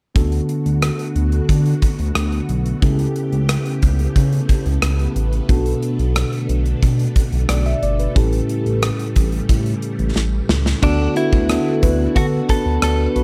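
A mellow tine electric piano with a phaser opens this glossy, nostalgic 1980s-style pop excerpt in D major at 90 BPM, joined almost at once by shimmering string-machine violins under ensemble chorus, a smooth, dark synth bass and a gated drum kit with a punchy kick, bright cymbals and a rim click, moving through D6, A7/C#, Bm7 and A7 before a drum fill at 10.2 seconds leads to a clean, compressed, direct-recorded electric guitar picking the melody from 10.8 seconds, all set in studio reverb.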